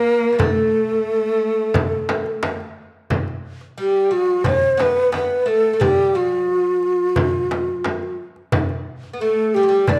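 A straight 4/4 pulse at 88 BPM, set by a crisp, dry metal-shell darbuka and a soft-handed frame drum sitting up front, underpins this hypnotic, melancholic Arabic maqam ensemble excerpt, where a breathy, hollow, close-miked ney leads the melody with vibrato and tongued notes over a woody, fretless, plectrum-plucked oud on double strings, while a rich, nasal bowed cello adds an expressive second line with portamento until 2.4 s, the group heard through a moderate echo-chamber reverb as the music moves into a new section at 3.1 s.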